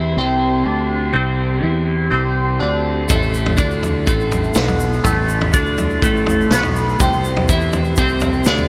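Psychedelic rock at 123 BPM in a straight 4/4, this short cut from a longer piece feels mysterious and hypnotic, tuned slightly below standard pitch. A bright, twangy twelve-string electric guitar plays the riff up front, double-tracked and run through a phaser, while a mellow, flute-like tonewheel organ holds sustained chords beneath it, its key click audible and its slow rotary speaker turning gently. A fuzz-driven fingered bass with a round, overdriven tone anchors the low end from the opening. At 3.1 seconds a vintage acoustic drum kit enters with a punchy kick, medium-tuned snare and toms, its top rolled off, alongside a grainy egg shaker sitting close but low in the mix. The harmony moves from C5 to A minor at 3.1 seconds and back to C5 at 7.0 seconds. A huge ambient reverb soaks the whole mix, giving it a dreamy quality.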